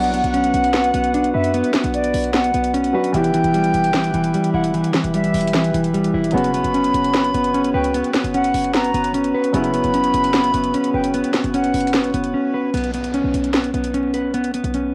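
A half-time trap beat of sharp snare and metallic hi-hats, colored by cassette tape, drives this brooding, dark hip hop excerpt, where a clean, fingered electric guitar plays delayed arpeggios up front over a punchy, tight 808-style bass, a breathy, close-miked silver flute adds an expressive second line through analog delay, a worn grand piano with audible action noise and a reedy, breathing harmonium sit in the background, and the drums briefly fall silent at 12.3 seconds before an electronic downlifter arrives in the background at 12.7 seconds, the whole home cassette recording carrying vinyl crackle and moderate studio reverb.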